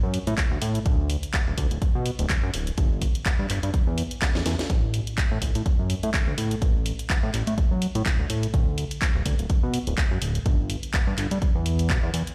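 Soulful and energetic, this piano house excerpt at 125 BPM swings its sixteenths over a fat, detuned sawtooth bass with tube saturation and sidechain pumping, a punchy up-front analog kick, and a layered, tape-warm house kit of handclaps, hi-hat and a cracking snare, with a drum fill at 4.2 seconds, all heard as if played through a big sound system in a bare stone room.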